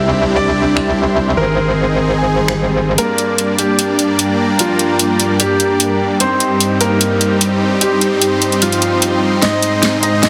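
A half-time 4/4 pulse carries this aggressive, heavy wobble dubstep passage, cut from a longer piece, where a bright, open grand piano melody with dub echo rides over huge, detuned supersaw chords and an airy, breathy pad with chorus and ring modulation. A metallic, saturated FM wobble bass with chorus and overdrive is heard only until 3.0 s, while the layered electronic drum kit, entering at 0.8 s with a huge snare, hi-hat and finger snaps, drives a build-up that ends in a drum fill from 9.4 s, touched by a very quiet swell and riser. The mix sits in a moderate digital room and has a heavily compressed, radio-like sound.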